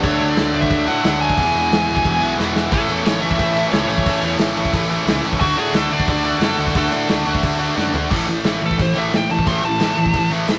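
Punk rock at 178 BPM in A major, upbeat and energetic, cut from a longer piece, where a nasal lead guitar with a parked wah carries the melody over an up-front bright distorted electric guitar riff, a double-tracked heavy high-gain guitar and an overdriven electric guitar set in the background, and a growly fuzz picked electric bass, while a loose indie drum kit with a tight kick and pumping small-room sound drives the song as the chords move from D and E to A, marks fills at 2.4 and 7.8 seconds, and ushers in a lead guitar solo at 8.1 seconds, all within a rough rehearsal-room recording washed in moderate stone room reverb.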